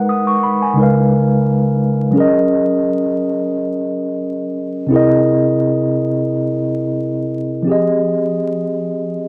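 Vinyl crackle and a moderate studio ambience frame this short, late-night R&B fragment, cut from a longer piece. A mellow tine electric piano plays alone, its tone clean and direct, sitting up front in the mix across a span from C3 to Eb6. The feel is smooth, with a light swing on the sixteenths in 4/4. The harmony moves through Abm7, Db13 and Gb6 before a tense C7alt arrives at 4.9 seconds. At 7.7 seconds the passage settles onto an Fm9 for a brief closing section that runs to 9.3 seconds.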